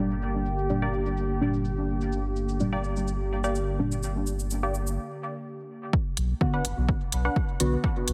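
An overdriven, punchy electronic kick drum arrives up front at 5.9 s, following a short break that begins at 5.0 s, in this cavernous, hazy fragment of dub techno. Before it, deep, dark chord stabs drift through chorus, phaser and dub echo alongside crisp, digital wavetable stabs, a warbling, nostalgic tape-like pad that drops out at 4.9 s, a round sub bass and smooth electronic shakers and hi-hats, with sidechain pumping on the pad, bass and both stabs. A lush hall reverb and a heavily compressed, low-passed radio sound wrap the mix in lo-fi murk as a filter sweep carries the opening section.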